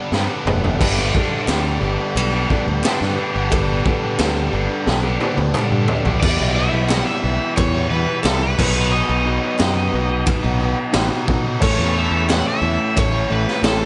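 Brooding and driving, this classic rock piece moves at 89 BPM in 4/4, opening on Gadd9 before shifting to E dorian at 6.2 s, where an overdriven slide guitar takes the melody through digital delay over Em, B and A. A gritty, saturated garage drum kit with a high-tuned snare, boomy kick and fills sits up front beside a direct, bright picked electric bass, while a compressed distorted electric guitar and an overdriven electric guitar play riffs in the background. Very quiet layers fill in the small room: a woody upright piano, a picked steel-string acoustic with finger squeak, a lightly overdriven tonewheel organ through a rotary speaker, and hollow, distant handclaps from 1.5 s.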